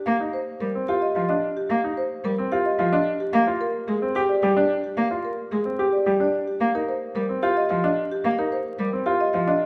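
Hypnotic and meditative, this short cut from a longer classical minimalist pattern piece moves in a steady three-beat lilt, with a woody marimba struck by medium mallets carrying the melody over rosewood bars while a clear, vintage grand piano with short sustain turns arpeggios beneath it. A single bowed cello supplies accompaniment with vibrato and expressive portamento, its tone warm, as the harmony shifts from Cmadd9 to a rootless Bb69 at 3.3 seconds and settles on Cm9 at 6.6 seconds. A wet recital hall reverb and a layer of vinyl crackle surround the ensemble.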